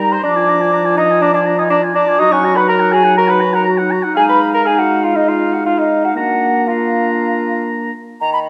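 Quick classical-period writing for wind quintet, this brief excerpt moves at 121 BPM in a straight 4/4 with a stormy, dramatic mood. A hollow, pure concert flute carries the melody high between Eb5 and Eb6, close-miked and tongued with vibrato, and it rings on slightly past the oboe, horn and clarinet to 8.4 seconds. Beneath it a warm oboe with light vibrato sings a second line from a distant, roomy position, while a mellow French horn with soft attack and a clarinet fill in the accompaniment. The bassoon sits up front as the bass, spanning Eb3 to C5 and standing out as the most prominent voice in the blend. The harmony passes from Bb7/F through Ebm/Gb and Fm7/Ab before settling on Bb, all bathed in the wet reverb of a recital hall.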